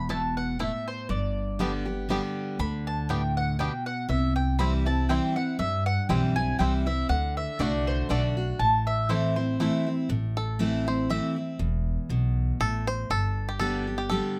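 Closely miked with light reverb, this haunting, lonesome bluegrass tune in a lilting swung 3/4 sets a mellow, double-strung mandolin melody and a twangy, fingerpicked banjo over a fresh-stringed dreadnought guitar with audible finger squeak and a woody pizzicato upright bass, before the banjo takes a percussive solo from 10.1 seconds.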